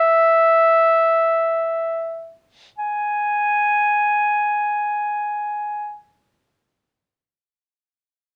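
Playful and shimmering, this brief contemporary instrumental fragment, cut from a longer piece, unfolds in free time. A single clarinet carries the melody alone, its clear, present tone sitting up front and shaped in a classical style. The line stays in a high, narrow band between E5 and G#5, sounding from the opening until about 6.0 seconds. The tempo slows through the first 2.8 seconds before the music moves into a second section that runs to 7.3 seconds. A light reverb gives the room a gentle sheen around the solo voice.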